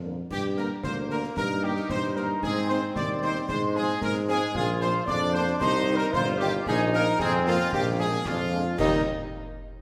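A tuba sits up front with a warm, roomy bass line from the opening, carrying a proud, spirited military-style march for wind band, a brief cut from a longer piece. Distant trumpets with a soft attack and light vibrato take the melody at 0.3 s, while an airy, close-miked flute ensemble and a dark, tight woodwind section add second lines in the background, very quiet mellow French horns accompany, and bright trombones hold sustained chords from 0.8 s. Clash cymbals, concert bass drum and concert snare drum add a live, acoustic pulse behind the band, all set in a wet scoring-stage reverb as the harmony moves from G minor toward a resolving Eb chord at 8.8 s.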